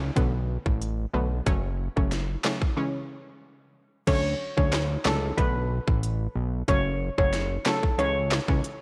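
A worn, warbly cassette-tape character with drifting pitch colours this sultry, tough dancehall excerpt in F# minor at 92 BPM, where an overdriven electronic island pop kit with tight kick, sharp snare, smooth hats, handclaps and crash sits up front beside a fat, thick, detuned analog bass with a filter sweep. A round, chorused analog pluck with a noise layer carries the chords from Bm7 through F#m and C#m. After a break from 2.8 to 4.1 seconds, a metallic, shimmering steel pan played with hard rubber sticks takes the melody at 4.1 seconds over a Dmaj7.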